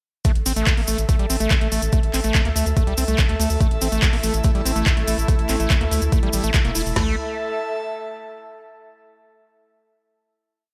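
A driving four-on-the-floor kick at 143 BPM in 4/4 anchors this short, intense psychedelic trance piece, with an overdriven garage drum kit up front: knocking kick, woody snare, toms and crash, plus metallic programmed hi-hats and handclaps on the backbeat. Hand-played cabasa adds grainy, bright sixteenths close to the ear, while a round analog bass from 0.4 s rolls in deep, dark sixteenth notes. Over this, a screaming distorted acid line squelches through an accented sixteen-step riff, its resonant sawtooth sound swept by a filter and thrown into dub echo, with chorus and sidechain pumping. An airy, breathy pad with a noise layer floats above in slowly shifting chords, and from 4.2 s an evolving wavetable pad adds a mellow, warbling drone in the background. The drop runs to 7.0 s, after which the breathy pad holds a final chord until 8.6 s, all set in light digital reverb.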